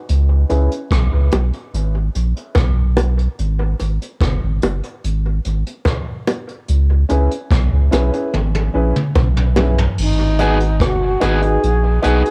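Meditative, hypnotic dub reggae at 73 BPM, cut from a longer piece and captured on home cassette with little reverb, where a round, up-front sine sub bass and a distant, roomy brush kit with dark cymbals and a boomy kick carry a long break under a filter sweep and a drum fill from 8.3 seconds, while tight, high-tuned bongos add dub-echoed percussion and a mellow, vintage grand piano with audible action noise adds dub-echoed stabs, before a breathy flute with vibrato enters at 10.0 seconds and a twangy, slightly broken-up electric guitar follows at 10.4 seconds, both filtered and soaked in dub echo as the chords move from C#7 through C#m7 to G#m7.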